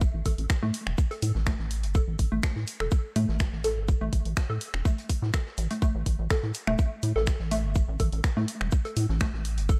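An overdriven, tight electronic kick sits up front in this clinical, quirky minimal techno piece at 124 BPM in straight 4/4, joined by a rubbery, wave-folded square bass with sidechain pumping that ranges from E1 to A2. From 0.3 s, a bouncy, hollow, detuned square pluck with lush chorus, sidechain pumping and digital delay spans A3 to A4, alongside a tape-tinged analog drum machine playing finger snaps and hi-hat. Deep in the background, a small-room acoustic street-band kit adds high-passed hi-hat, shaker and snare, all within a dark studio reverb.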